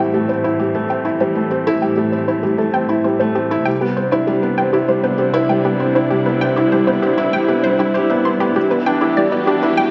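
This melancholic, cinematic piece of piano and strings electronica opens with three parts sounding together at once: a felt-muted upright piano playing a riff, a dark studio string section holding sustained chords, and an analog pluck running arpeggios high above. Set at 98 BPM in a straight 4/4 in A dorian, with tuning at A4 = 438 Hz, the harmony moves from Am7 to Cmaj7 at 3.7 seconds and on to Em7 at 8.6 seconds. The piano sits up front, soft and intimate, with audible action noise, short sustain and the thin, mellow tone of its felt, its riff echoed by a digital delay. Also up front, the bowed strings play sul tasto with vibrato, giving a woody, lush ensemble sound shaped by a low-pass filter. Further back, the analog pluck blends sawtooth, square and triangle waves with detuning, a noise layer and ring modulation, sounding bright and round, with a fast attack and short decay treated by chorus and digital delay. 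The whole passage is a build-up, with filter sweeps on the strings and the arpeggio sound, all set in a wet scoring-stage reverb, and it is cut from a longer piece.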